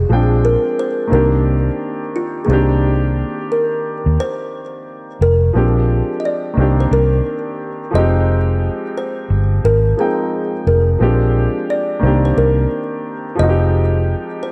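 A dark, round electric bass, foam-muted and punchy, sits up front in this melancholic, nostalgic lo-fi hip hop excerpt, holding the low end until 14.1 seconds. Beside it, an upright piano with a woody, open tone carries the accompaniment, colored by cassette tape. A plucked kalimba takes the melody in short, hollow thumb-plucked notes, its smooth sound trailed by delay. The groove swings on sixteenth notes in 4/4, with the harmony moving through Bb13, Cm7 and Cm9 before Fm7 joins the progression at 7.9 seconds. Lush hall reverb soaks the dreamy mix, and a cassette tape haze lends it a gentle, faded glow.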